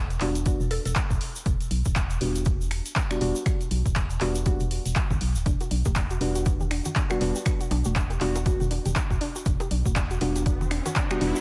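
Moody and late-night, this deep house excerpt at 120 BPM in E minor rides a swung 4/4 groove: a punchy, overdriven electronic kick and a layered kit of finger snaps, handclaps and hi-hat sit over a hollow, organ-like FM bass with tube saturation and sidechain pumping, while a grainy tube shaker ticks along. Deep, nasal chord stabs on an Em9 breathe with chorus, tape echo and sidechain pumping. A brief woody mallet pluck with 12-bit sampler grit and diffuse delay appears at 0.7 seconds; a soft, round arpeggiated pluck arrives at 5.5 seconds along with close, dry bongos and congas in the background, and an electronic riser enters at 10.3 seconds, all under a haze of vinyl crackle and light reverb.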